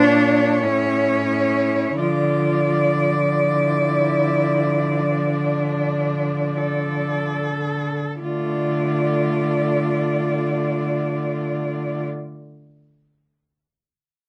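Under light reverb with lossy compression artefacts, this elegiac, solemn excerpt of a classical cello ensemble in D minor unfolds in free time, slowing over its first 8.2 seconds as a rich, focused bowed cello sings the high melody up front with vibrato, a more distant second cello carries an inner line, an intense third cello supplies accompaniment, and a clear, even cello holds the bass, all four playing together through a Bb, A and D minor progression until about 12 seconds.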